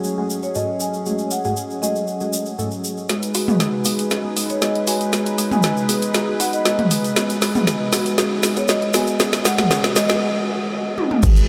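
Up-front deep house drums with a woody snare and dark hats arrive at 3.1 seconds in this driving, hypnotic afro house cut at 118 BPM in G# phrygian, joining a detuned sawtooth analog pad, soft, dark chord stabs pumping beneath the sidechain, a grainy tube shaker and a round soft-mallet marimba melody with delay, while a hollow, ringing kalimba adds arpeggios and a boomy 808-style bass and punchy electronic kick land at 11.2 seconds, the mix soaked in huge, dreamy reverb.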